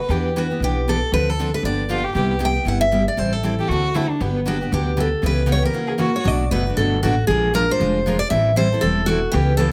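A picked jumbo steel-string guitar carries the melody from 0.4 seconds, its fresh strings sounding bright and full-bodied, with finger squeaks audible up front. This charming, playful cut from a longer piece of acoustic string swing in the jazz manouche style moves at a brisk, swung clip. Beneath it, a second picked concert guitar supplies the accompaniment while a pizzicato upright bass with gut strings adds a woody, thumpy pulse. A bowed violin plays a second line with vibrato, portamento and a smooth top, sounding expressive until it drops out at 6.2 seconds. A break arrives at 5.7 seconds before the tune moves into a new section over jazzy seventh and ninth chords. All four players sit up front in a moderate club reverb that lends the small group a sense of space.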